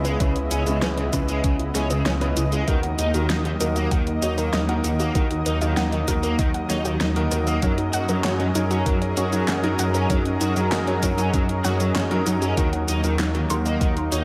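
A straight 4/4 pulse at 97 BPM, driven by an overdriven, knocking electronic kick from 0.2 s and a gated-reverb pop kit of fat snare, handclaps, hi-hat and shaker, carries this nostalgic, cinematic synthwave excerpt in Eb phrygian, where a thick, up-front detuned saw bass with tube saturation and a lush sidechain-pumped unison pad hold the Dbm7, Ebm and Gb6 harmony, while a warbling, lo-fi pluck spins delayed arpeggios in the background, an overdriven semi-hollow guitar picks a chorused riff, and a warm baby grand adds delayed stabs, all set in a moderate recital-hall reverb.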